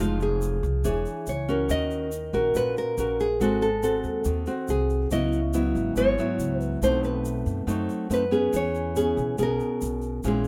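A straight 4/4 bossa nova groove, smooth and intimate and cut from a longer piece, has a fingerpicked classical nylon-string guitar carrying the melody over a second, up-front nylon-string guitar's accompaniment through chords such as Fm7, G#7b9 and C#m11, while a woody, thumpy pizzicato upright bass on gut strings sits up front and a grainy, bright, compressed egg shaker joins at 0.2 s, set in the small-room ambience of a rough home demo.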